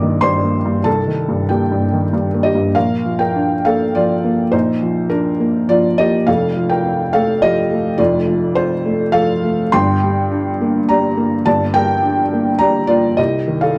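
Wistful and melancholic, this short cut from a longer neoclassical minimalist piano piece moves in a rubato 3/4 at roughly 92-107 BPM, tuned to A4 = 439 Hz. A felt-muted upright piano plays alone throughout, its soft, boxy tone sitting up front and intimate, with audible action noise, ranging from F1 to Eb6 over a Cm7, Bb, F, Gm and Cm progression. Light reverb and a dark production frame the playing, and a brief opening passage gives way at 2.8 seconds to a longer second section.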